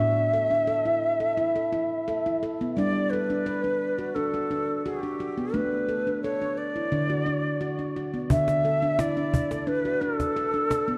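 Calm and dreamy, this meditative world piece for tuned percussion moves at an easy 87 BPM in 4/4 with a straight feel, centered in D major. A mellow cedar flute in the Native American style carries the melody, its airy wooden tone shaded with gentle vibrato, a soft attack and a touch of delay. Beneath it, a handpan rolls out ringing arpeggios from low to middle register, played with the fingertips and captured close, dry and full, its nitrided steel giving a warm, meditative resonance. At 8.3 seconds the music shifts into a new section as a snappy acoustic cajon with snares joins, sitting close and up front. The whole excerpt is bathed in a wet echo-chamber reverb within a dark, warm production.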